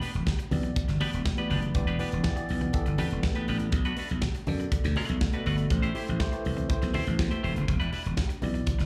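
A straight 4/4 disco groove at 122 BPM drives this short, glamorous and danceable cut from a longer piece in E minor, heard as a live gig through the venue's PA with club reverb around it. An acoustic studio drum kit sits up front with a punchy kick, medium-tuned snare and hi-hat, while very quiet, high-tuned congas add bright, thin-skinned hand percussion from the start. Entering at 0.1 seconds, a growly slap bass, direct and amped, carries the low end between E1 and F#2 as the loudest instrument. A clean, twangy electric guitar, fingered and compressed, accompanies with spring reverb and slapback echo, and a tine electric piano heard through its built-in speakers joins at 0.5 seconds, also carrying slapback echo. The harmony moves from Em7 to Bm7, then Am7, and returns to Em7 at 7.7 seconds.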